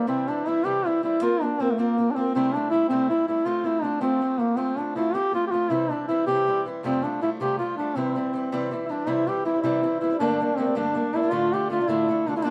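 A mellow duduk carries the melody up front in a folk style, its smooth top sitting between A3 and G4 as it plays solo over the accompaniment. This is rollicking, bright Celtic folk in C mixolydian, moving at 107 BPM counted in dotted quarters in a straight 6/8, with tuning set at A4 = 443 Hz. A fingerpicked acoustic archtop guitar, also up front, supplies a boxy accompaniment spanning D2 to Bb4, with audible finger squeak adding to its warm character. The opening passage moves through C, Bbsus2, C6 and F before returning to C and Fadd9, and at 9.1 seconds a new section turns toward Gmadd9 and Dm. The band plays live in one room with moderate studio reverb, giving this brief cut from a longer piece a lively, shared-space feel.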